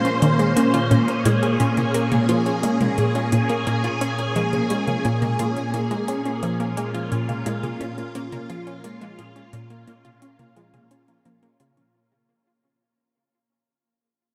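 Soaked in a huge ambient reverb with a 7.4-second tail, this short cut from a longer piece of ambient, sequencer-driven space music feels expansive and hypnotic, moving at 87 BPM in a straight 4/4 on a Bb minor chord, tuned to A4 = 438 Hz. Up front, a phased string machine holds swirling, vintage sustained chords with a slow attack and long release, its bright sawtooth tone colored by ensemble chorus, phaser and shimmer reverb. Alongside it, a detuned unison pluck spins lush, full-bodied arpeggios with a noise layer and short decay, sent through tape echo. A plucky analog bass enters at 0.2 seconds with a punchy, funky riff, its wave-folded, filter-plucked tone rounded by lush chorus and tape echo. A booming analog drum machine sits low in the mix, with metallic hats and toms, tape-warm and echoing. The whole passage is a single section that begins fading out at 0.9 seconds and continues fading to its close at 11.9 seconds.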